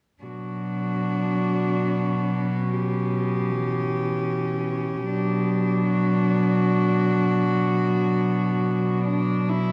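Classical and elegiac, this brief excerpt of a lyrical piece for cello ensemble unfolds in free time in B minor, moving from Bm through C#m7b5/B and back to Bm. Four bowed cellos, each a single player sul tasto, play together from 0.2 to 9.7 seconds: a floating, pure-toned cello carries the melody, an intimate, close cello with vibrato and a smooth top sings the second line, a woody accompaniment cello adds vibrato and portamento, and an up-front bass cello holds a low B. A moderate recital hall reverb gives the dark production a gentle, distant glow.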